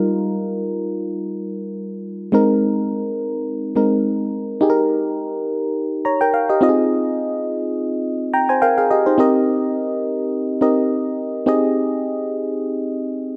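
A dark, up-front FM electric piano plays alone through this nostalgic, romantic pop excerpt with a lightly swung sixteenth-note feel, its fast-attack, decaying notes carrying a noise layer and bathed in a moderate plate reverb, as it moves through added-ninth and seventh chords and slips in a brief fill from 8.0 to 9.2 seconds.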